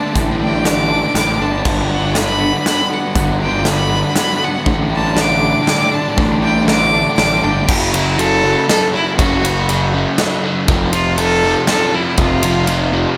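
A clear, focused violin carries the melody from a distance with vibrato and tape echo, soaring over a cinematic, euphoric post-rock excerpt cut from a longer piece at 120 BPM in 3/4. For the first 7.7 seconds a lush, very quiet string section holds sustained chords and a twangy guitar plays picked arpeggios through phaser and tape echo in the background, building up over A7sus4 and Gmaj7 before both stop as the harmony shifts to F#m and F. Throughout, a crunchy, double-tracked overdriven guitar riff, a growly fuzz bass and a huge arena drum kit with a punchy kick, crashes, ride, hi-hat and a medium-tuned snare sit up front in a light reverb.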